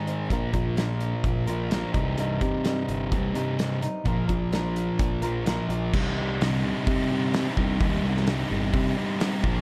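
A straight 4/4 pulse drives this brooding, cathartic quiet-loud alternative rock fragment, where a boxy, fresh-stringed acoustic guitar plays fingerpicked swing-style arpeggios until 5.9 seconds under a thick, double-tracked fuzz guitar riff up front, while a loose indie drum kit with a pumping studio room, dark cymbals and a punchy kick sits forward beside a round, overdriven picked electric bass as the chords move between Bb and C minor.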